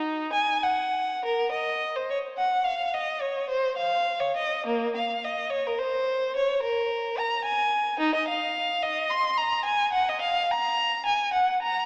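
A single bowed violin, rich and focused with a smooth top and vibrato, carries this grave, flowing baroque-style suite movement alone from 0.0 to 11.9 seconds, moving in a rubato 12/8. The player sits up front in a reverberant concert hall. The sound comes through a worn cassette with warbling pitch drift and a small-speaker character, in a short passage cut from a longer piece.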